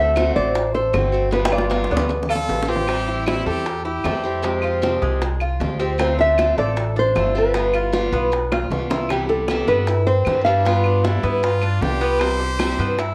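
Worn, warbling cassette tape with moderate studio reverb colours this sunny, danceable fragment of Cuban son and guajira at 154 BPM in C major, moving from D7 and G7 toward a closing Cmaj7. A small, thumb-plucked nylon-string guitar carries the melody, dropping out at 2.7 seconds and returning at 6.0, while a brilliant, punchy trumpet with vibrato adds a forceful second line from 2.3 seconds and again near the end. Underneath, a boxy picked archtop guitar with finger squeak, a mellow yet metallic double-strung tres playing arpeggios, a dark, thumpy gut-string upright bass up front, round low-tuned bongos struck with hard hands, and woody claves in the background keep the groove going, with two drum fills along the way.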